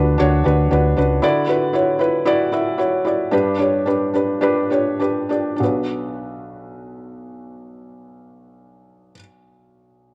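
Dramatic and driving, this short pop fragment pairs a soft, felt-muted upright piano, intimate and up front with audible action noise, against a round, dark hollow-body electric bass that plays only until 1.2 s, after which the tempo slows through 5.6 s over Dadd9 and G chords, all carried by moderate spring reverb and the character of a home cassette recording.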